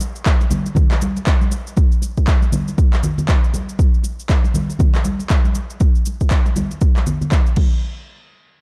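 This house groove moves at 119 BPM in 4/4, with a 60% swing on the sixteenths that gives it a loose, rolling feel. A punchy, overdriven electronic kick drum enters at 0.3 seconds and sits up front, layered and plainly produced. Behind it, a deep house drum kit with cabasa, crash cymbal and handclaps runs from the start, its electronic layers also pushed through overdrive and kept lower in the balance. Bright, close congas play throughout with an acoustic snap that lends the short passage an earthy, spiritual character. The whole piece is set in a digital ambience with a dark, warm production, and it is cut from a longer track.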